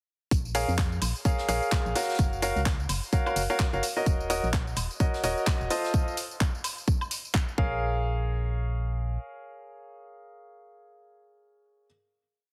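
A punchy four-on-the-floor kick drives this energetic, soulful piano house piece at 128 BPM in 4/4, with a 58% swing on the sixteenths. Programmed hats and a backbeat of handclaps, open hi-hat, tambourine and high woodblock sit on top, while a distant, very quiet brush kit adds a looped breakbeat with edits on hi-hat and snare. Beneath it, a dark, hollow, organ-like FM bass plays a dotted rhythm from Eb1 to F2, pumping against the kick. A polished baby grand piano carries a close-voiced rhythmic chord riff between F4 and F5, also pumping and trailed by dub echo, over a Bbm7, Gbmaj7, Ebm7, F7 progression in Bb minor. The drop runs from 0.3 to 7.8 seconds, then a final hit follows, with the bass stopping at 9.2 seconds and the piano carrying on to 11.9 seconds. Light reverb and heavily compressed, radio-style processing shape the mix.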